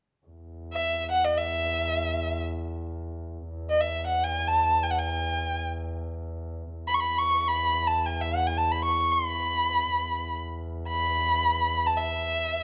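Arabic maqam ensemble music in free time, centred on E maqam rast, with a festive, passionate mood in this short section cut from a longer piece. A bowed double bass holds a dark, reedy drone on E2 from 0.3 seconds, its gut-string tone distant and touched with light vibrato, while a solo violin enters at 0.7 seconds up front with a clear, focused melody sung out with vibrato in its high register. The pair sits in a moderate recital hall reverb, and the top end is gently rounded off.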